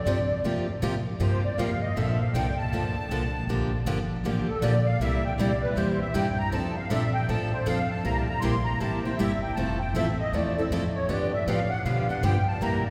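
Acoustic string swing in the jazz manouche style, swinging and charming at 158 BPM, opens with a reedy, shimmering musette accordion taking the solo across the whole 12.9-second cut, its boxy small-room tone sitting up front. A thumpy, woody upright bass with gut strings anchors the changes from C7sus4 through Bbmaj7, Gm7 and F6, while a bright picked steel-string acoustic guitar with audible finger squeak accompanies up front and a plugged-in acoustic guitar with fresh strings supports from the background. The players sound as if recorded in a church or concert hall, bathed in a long, wet cathedral reverb.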